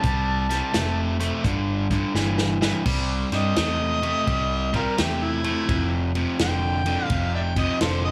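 An overdriven harmonica leads a rollicking, laid-back electric blues shuffle in C major at 85 BPM, soloing with gritty tongue slaps, scooped notes and vibrato in a jazz style over a crunchy, bright, up-front picked guitar riff, a dark, round foam-muted fingered bass and a natural acoustic drum kit with a punchy kick whose fill at 2.2 seconds leads into a repeat of the phrase, all in a small, dry room.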